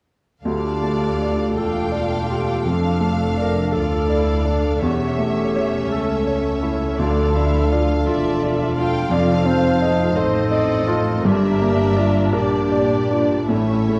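A dark, warm production set on a moderately reverberant scoring stage frames this tragic, passionate romantic passage for piano and orchestra, cut from a longer piece. In D minor at a slow 55 dotted-quarter beats in 12/8, the pulse breathes with rubato and uneven beats, moving through Dm, Dm/F, A7/E, back to Dm, then F7 and Gm. A clear, polished baby grand piano sits up front carrying the melody, joined by a lush violin section that also sings melody with vibrato, while a second violin section offers a soft-attacked, expressive second line. A solo clarinet of dark, classical colour weaves its own second line, violas supply smooth, even accompaniment, and a mellow, distant French horn section holds sustained chords in the background. Beneath them, a woody cello section and bowed double basses anchor the bass, and very quiet, articulate timpani strokes with hard mallets appear only between 7.0 and 8.0 seconds.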